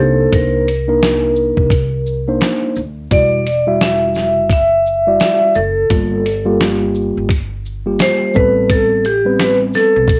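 A home cassette recording with light reverb frames this mellow, smoky jazz-hop clip, where a dark, ringing vibraphone struck with hard mallets and slow motor vibrato carries the melody over a clean, mellow tine electric piano accompanying through its built-in speakers, a woody pizzicato upright bass sitting low beneath, and a gritty, compressed sampler-style soul kit with a thumpy kick, snare, shaker and hi-hat that enters at 0.3 seconds, the swung groove moving through minor ninth chords from Cm9 to Am9.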